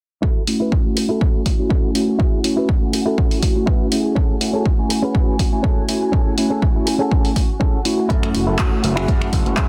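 Filtered disco house at 122 BPM in 4/4, with a light 16th-note swing and a sensual, nostalgic mood, taken from a longer piece. A punchy, tape-warm electronic kick sits up front from 0.2 seconds. Alongside it, a clean, scooped electric guitar riff is recorded direct, and a swirling vintage string machine holds sustained chords in the background through ensemble chorus and phaser. From 0.5 seconds a bell-like tine electric piano adds phased accompaniment, and an analog drum machine brings finger snaps, handclaps and hi-hat, re-recorded in a small room with soft clipping on the snare. The strings, guitar, piano and hats pump against the kick, while a filter sweep runs across the whole passage as the chords move from Amaj7 to F#m7. At 8.1 seconds a gritty, overdriven slap bass enters with barely audible maracas, all in a dense, heavily limited modern master with digital ambience.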